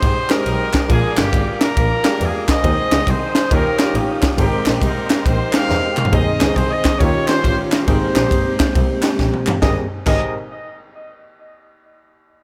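A smooth-topped horn section carries the melody through analog delay over soft, flute-like tonewheel organ chords turning on a slow rotary speaker, a bowed double bass with rich vibrato and a punchy, gritty fusion drum kit with bright cymbals up front, as a clear, intimate grand piano with subtle chorus and very quiet, crisp handclaps join at 0.3 s in this jubilant, hopeful uptempo swung gospel excerpt in Ab major at 137 BPM, bathed in dreamy plate reverb, with drum fills at 5.7 s and 9.2 s.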